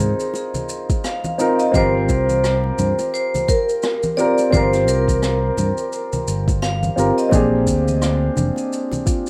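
A vibraphone struck with hard mallets carries the melody from 1.0 s, its metallic, ringing tone shimmering with a fast motor vibrato and trailed by tape echo. This wistful, smooth sunset chillout fragment, cut from a longer piece, moves at 86 BPM in 4/4 with a 57% swing on the sixteenths. Beneath it, a worn baby grand piano sits up front with long sustain and its own tape echo, voicing rootless Ab69 and Eb69/G chords before the harmony turns to Bb13. A punchy, amped fingered electric bass anchors the low end, while shaker and rim click played with brushes have a rolled-off top, bright hard-handed bongos and congas stay in the background, and a soft electronic kick joins at 0.9 s. At 7.3 s a woody, dark kalimba enters with thumb-plucked arpeggios, dressed in tape echo and plate reverb, all within a moderate studio room and a rough home demo mix.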